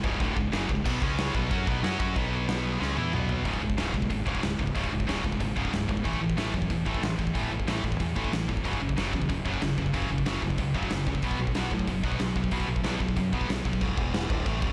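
Two picked, high-gain electric guitars crash in together with a growling, overdriven fingered bass and a punchy, up-front rock kit of kick, snare, hi-hat, toms, crash and china, hammering out an aggressive, relentless heavy metal riff that rocks between C#5 and B5 power chords. A drum fill at 2.8 seconds launches a pounding passage moving through C#5, A5, F#5 and B5, with the heavier guitar up front while its twin sits in the background. The front guitar drops out at 13.8 seconds, and the whole cut from a longer piece has a blown-out, overdriven sound with a bright stone-room drum ambience.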